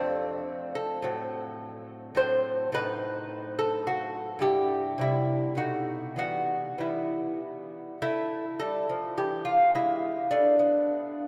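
Classical baroque-style dance in 3/4 and E minor, played by a solo lute at a flexible, rubato 105 BPM, with an introspective, grave mood across this brief 11.3-second cut from a longer piece. The fingerpicked lute sits up front, bright and delicate, its doubled gut strings, some of them octave-doubled, ranging from F2 to C5 as the harmony moves from F through B7 and Em to a closing E7/G#. A wet cathedral reverb places the instrument in a vast, echoing space, letting each note ring out long after it is plucked.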